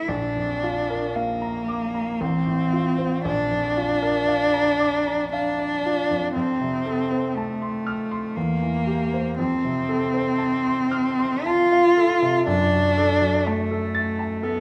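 A single bowed cello sits up front with a rich, focused tone, a smooth top and vibrato, singing a tender, lyrical melody in an unhurried 3/4 with rubato and uneven beats. A clear concert grand piano with deep bass, a vintage character and short sustain accompanies it throughout, also placed close. The pair sound as if captured in a church or concert hall, bathed in wet recital hall reverb, in a passage cut from a longer romantic piece.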